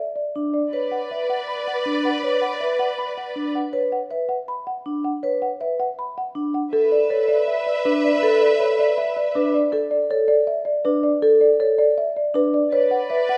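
Hypnotic and bright, this short excerpt of minimalist classical pattern music moves at 160 BPM in a straight 4/4 around B minor, with a woody, round folk marimba on soft mallets carrying the up-front melody, a metallic, ringing vibraphone on medium mallets spinning arpeggios beneath it, and a rich, vibrato-laden string section adding sustained chords in brief spans from 0.7, 6.7 and 12.7 seconds, all set in a moderate recital hall reverb.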